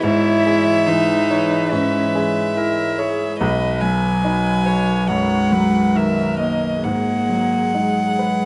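In a rubato 4/4 at 67-72 BPM, this fragile, melancholic neoclassical excerpt sets a rich, airy sul tasto violin melody up front over a dark, intimate cello second line, a brilliant concert grand with deep bass and long sustain, a pure, floating viola, and a very quiet warbling, nostalgic tape-like pad with chorus, moving through E6/G#, B and G#m7 in a small room with a rough home-demo sound.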